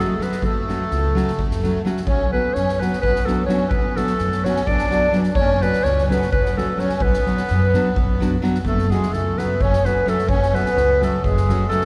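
Balkan wedding-band folk in a brisk, straight 7/8 at 255 BPM, this bittersweet yet fiery excerpt sets a clear, classical-style clarinet up front over a reedy, shimmering musette accordion second line, fingerpicked nylon-string guitar, and a woody, growly pizzicato upright bass, with a distant soft-mallet kit of fat snare and boomy kick entering at 0.2 seconds. The harmony moves between F#m and Bm, turning to a new section at 8.6 seconds, and the whole band is bathed in a long cathedral reverb that gives the sound the spacious glow of a church or concert hall.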